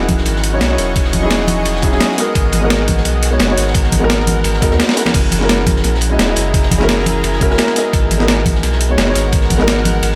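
This excerpt opens on a dark, mellow grand piano up front, with a shimmering, ethereal pad drifting in the background and a round sine sub bass beneath, all sounding from the first moment in a melancholic, lush liquid drum and bass groove at 172 BPM in G# minor. The pad carries sustained chords with a slow attack, detuned octave-up shimmer, granular texture, chorus and its own reverb, pumping against the beat, while the piano's accompaniment is touched with delay. At 0.1 seconds the drums arrive: a gritty, compressed sampler-style breakbeat kit with a high-tuned snare, hi-hat and crash sits up front, layered over a thumpy electronic kick and a crunchy, saturated acoustic break with dark, rolled-off cymbals and a small-room character tucked behind. Bright, close and dry congas add another layer in the background, and the sixteenths carry a light swing. A drum fill lands at 4.9 seconds as the harmony moves through Emaj13, G#m9 and F#9 before returning to G#m9, all wrapped in light reverb.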